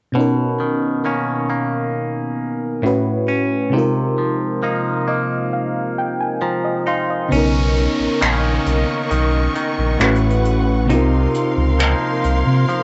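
Opening on a glassy, bell-like FM electric piano with chorus and a twangy, clean electric guitar playing arpeggios through phaser and analog delay, this smooth, romantic contemporary R&B excerpt, with its home-cassette haze, moves from Bmaj9 through A69 and Ab69 to an electric piano fill at 4.6 seconds before deep sub bass, focused bowed strings, a distant brushed kit of finger snaps and hi-hat, and a background downlifter join at 7.3 seconds.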